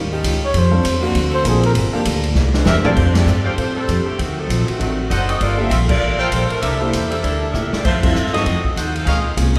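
Drenched in the wet reverb of a large hall, this energetic, swinging big band jazz passage in F major at 197 BPM opens with a veiled, bucket-muted trumpet solo over a warm background bed of saxophone chords, then hands the melody at 2.7 seconds to a clear, up-front saxophone section while a vibrato-tinged trumpet section adds stabs from 3.4 seconds, all driven by a growly, woody pizzicato upright bass, a distant, roomy drum kit with a boomy kick and fills, a dark, intimate baby grand piano with audible action noise, and a bright, very quiet picked steel-string acoustic guitar.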